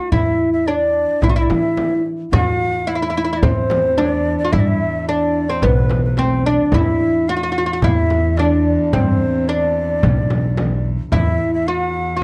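Melancholic and longing, this Arabic maqam ensemble piece in E maqam bayati moves at 109 BPM in a straight 4/4, with a mellow, woody fretless oud carrying the melody up front while a breathy, close-miked ney with vibrato traces a second line above it. A pizzicato upright bass anchors the low end beside a crisp metal-shelled darbuka and a deep, distant frame drum sitting in the background, and at 2.3 seconds a rich, floating bowed cello enters on a soft sul tasto drone on E. The sound is dry and close, like a 1970s studio session, and the recording is cut from a longer piece.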